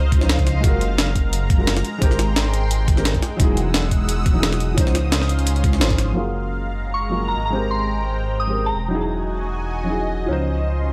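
Digital ambience frames this short cut from a longer liquid drum and bass piece in G-flat lydian at 174 BPM, with a lightly swung 16th feel and a warm, lush mood. A felt-muted upright piano plays soft, intimate accompaniment through a low-pass filter and dub echo, its thick felt and audible action noise clear as filter sweeps move across it, while a thick detuned pad holds slow-attack chords with chorus, phaser and sidechain pumping. Underneath, a dark detuned saw bass rumbles and beats up front, moving through a cycle of major-ninth chords from Dbmaj9 through Gbmaj9, Abmaj9 and Emaj9. A pitched-up, gritty breakbeat kit with a medium-tuned snare and hi-hat sits forward alongside a compressed, thumpy electronic kick, both tape-tinged from re-recording in a small room, and the drums drop out near 6.1 seconds after a band accent at 5.8 seconds. In the second half, a pure FM synth bell carries a brief gentle melody from 6.9 to 8.8 seconds, roughened by vintage 12-bit sampler grit with chorus and digital delay.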